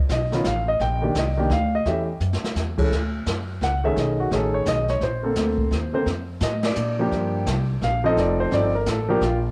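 A home cassette recording with moderate spring reverb and a small-room ambience frames this relaxed, sophisticated jazz piano trio excerpt, swinging in 3/4 at 171 BPM through rich harmony such as Ebmaj7, Dmaj7, B13 and Bbmaj9. Up front, the grand piano carries the melody with an intimate, natural tone and audible action noise, while the pizzicato upright bass sounds woody on its steel strings. The distant, roomy brush kit, with dark cymbals and a boomy kick, adds a drum fill at 2.2 seconds before a band accent at 6.6 seconds and a new section from 7.1 seconds.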